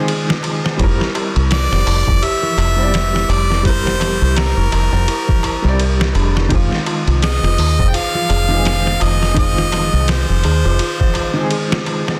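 Trip hop with a melancholic, hypnotic mood, this brief cut from a longer piece sways on a swung 4/4 groove built from a tape-warm, gritty, pitched-down sampler-style drum kit with a thumpy kick and a softly clipped snare, all sitting up front. A small metal-shell darbuka adds crisp, high accents from the distance of a large room, tucked into the background. The deep dub fingered electric bass enters at 0.8 seconds with a round, dark, foam-muted tone, prominent in the mix until 10.8 seconds. A felt-muted upright piano supplies intimate, mellow accompaniment colored by tremolo and tape echo, while a detuned FM synth bell spins eerie, inharmonic arpeggios with chorus and echo over the harmony moving between Fm7 and C7/F. On top, a clear, punchy harmonica carries the solo melody through tape echo, all set in small room ambience with a dense, heavily limited modern master.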